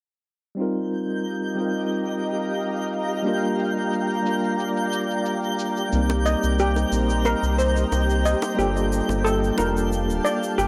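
A clean tine electric piano opens this relaxed sunset chillout piece at 0.5 seconds, up front with a filter sweep and analog delay at 90 BPM over chords moving from F9sus4 to Gm9. It is joined by a faint electronic shaker, a shimmering, ethereal pad with chorus, and a twinkling, sparkling granular texture. A round, deep analog bass then arrives at 5.9 seconds, followed by tight, high-tuned bongos at 6.1 seconds and a bright, metallic steel pan playing delayed arpeggios from 6.3 seconds, all in a dry, gritty recording with light reverb.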